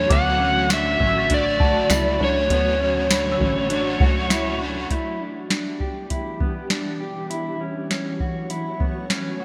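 A soft vintage rhythm box with a deep kick, crisp snare and metallic hats sets a straight 100 BPM pulse in 4/4, up front with gated reverb, for this ethereal, haunting dream pop excerpt in E dorian, where a dark overdriven slide guitar carries the delayed melody, a picked, chorused overdriven electric guitar and a punchy, plucky analog bass accompany until 4.9 s, and an airy detuned pad with tremolo, clean fingered arpeggios on a mellow electric guitar and a delicate, bell-like celesta in the background drift through a lush hall over Dmaj7, Em7 and F#m7 in bright 1980s-style digital production.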